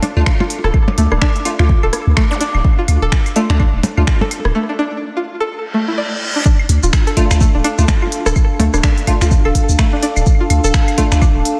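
Cool and sparse, this minimal techno excerpt rides a swung 4/4 groove, cut from a longer piece. A deep, up-front electronic kick and a punchy sine sub bass with a pitch-drop attack anchor the low end, while a minimal click drum kit of finger snaps, clicky hi-hats and shaker, re-recorded in a large room, ticks alongside tape-warm percussion blips, claves and rim clicks with delay. The main riff comes from a twangy, string-like resonator pluck, bright and sawtooth-based with a noise layer, filter sweep, chorus, delay and sidechain pumping. Alongside it, a warbling, nostalgic lo-fi pad of square and triangle tones sustains darkly with chorus, built-in reverb and pumping, and a crisp, detuned wavetable chord stab with cassette tape character and delay sits in the background, dropping out between 4.0 and 7.2 seconds. An electronic zap sounds briefly at 2.3 seconds, and a break from 4.5 seconds brings a reverse cymbal leading into the drop at 6.5 seconds, all within a light reverb.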